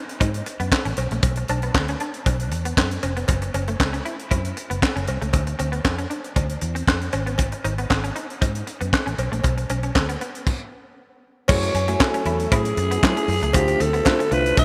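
A raspy, growling alto saxophone takes the lead at 11.5 seconds in this slick, late-night early-eighties boogie funk excerpt, joined by a worn, slightly out-of-tune tine electric piano and a silky, very quiet string machine, after a groove of bright, compressed semi-hollow guitar riffing, a tight, saturated funk kit with handclaps, a dark, foam-muted fingered bass and a dry cowbell in the background, all of which halts briefly at 10.5 seconds, with a lush hall reverb and bright 1980s-style digital production.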